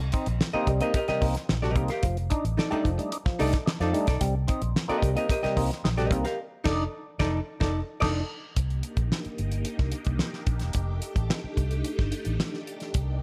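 A straight 110 BPM funk groove in 4/4 and C dorian drives this sly cut, with a dry, damped 70s drum kit up front, a round, foam-muted fingered bass and a hollow-body archtop guitar carrying the first 8.2 seconds alongside key-click organ stabs through a slow rotary speaker, a band accent landing at 6.4 seconds, and a swirling, phased sawtooth string machine taking over the sustained chords from 8.6 seconds in a lightly reverberant studio room.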